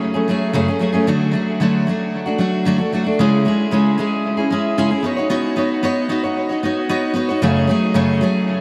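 A picked steel-string acoustic guitar opens this short rock fragment and carries it alone from 0.0 to 8.6 seconds, its jangly, full-bodied jumbo tone sitting up front with a subtle chorus and diffuse ambient delay. At 113 BPM in a straight 4/4, the guitar moves through F#madd9, D, C#m and Badd9 before returning to F#madd9 at 7.4 seconds. The whole mix is soaked in a huge ambient reverb, giving the dreamy, warm piece a spacious, lingering glow.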